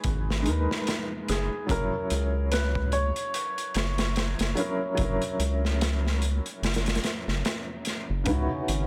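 A slow 4/4 groove at 73 BPM, with a gentle swing on the 16ths, sets this melancholic, smoky trip hop excerpt in motion. A crunchy breakbeat kit sits up front, its tight kick, medium-tuned snare and hi-hat sounding saturated and gritty with a rolled-off top. A round analog bass holds the low end with a deep, dark, fast-attacking tone. A felt-muted upright piano plays soft, mellow accompaniment through tremolo and tape echo, its action noise audible, over harmony moving from G#madd9 to F#7. From 1.3 to 7.4 seconds a second felt-muted piano carries a thin, intimate melody, roughened by 12-bit sampler grit and tape echo. At 8.3 seconds a dark chamber string section enters in the background on a bowed C#m11 chord, played sul tasto with light vibrato, and the whole excerpt sits in a small room with light reverb.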